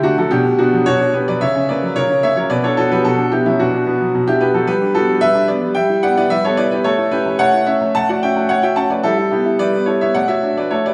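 A clear, open grand piano with long sustain plays alone through this graceful, playful classical-period sonatina fragment at 110 BPM in a rubato 4/4, moving from B minor through G, E minor and A before coming to rest on D over A, all bathed in a wet recital-hall reverb heard from further back in the room.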